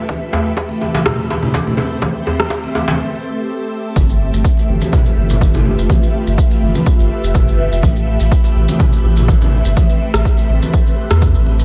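This afro house excerpt opens on an ethereal, airy pad holding sustained chords from Am9, shimmering through ensemble chorus, phaser and built-in reverb with a touch of vintage 12-bit grit and sidechain pumping. A punchy, up-front electronic kick drives the groove in a swung 4/4, joined by distant, bright congas and a tight, cracking djembe that plays only until 3.0 s, while an overdriven rim click appears briefly in the build-up. After a short break, the drop lands at 4.0 s as the chords shift to G13 and a deep, round sub bass enters with tube saturation and its own sidechain pumping, alongside grainy maracas. The harmony returns to Am9 at 7.8 s, and the rim click comes back near the close of this warm, driving track before the cut. The whole mix sits in a small room ambience, the kick and bass carrying the weight beneath the mellow pad.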